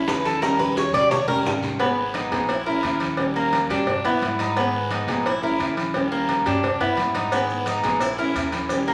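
This short cut from a longer Cuban son and guajira piece opens with a fingerpicked nylon-string guitar, bright and small-sounding up front, alongside a woody, thumpy pizzicato upright bass. In the first 1.8 seconds the Cuban tres takes a brief solo of metallic, double-strung arpeggios, some strings octave-doubled, while a drum fill runs underneath. From there the tres keeps picking arpeggios up front as the band cycles through a sultry minor progression that keeps returning to a dominant seventh and a half-diminished chord. The percussion rides in a straight 4/4: round, low-tuned bongos and cowbell struck with hard hands and given a compressed, saturated edge, with thick-skinned congas and a raspy guiro further back. Grainy, mellow maracas sit faintly in the background at the start and again from 7.3 seconds. A lush large-studio reverb and a layer of vinyl crackle give the whole a warm, aged glow.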